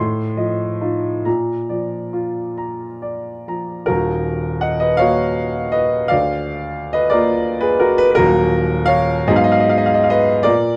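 A clear baby grand piano opens this short cut from a romantic nocturne, sounding alone and up front with an open tone and long sustain. The mood is mournful and wistful, and the playing moves with a free rubato across a 12/8 metre, spanning the instrument from its deep bass to its upper middle register. The brief opening phrase gives way at 3.9 seconds to a second passage that settles into the home minor chord. That passage runs until the fragment breaks off at 10.8 seconds on a minor seventh chord. Light reverb surrounds the piano, and the overall production leans dark.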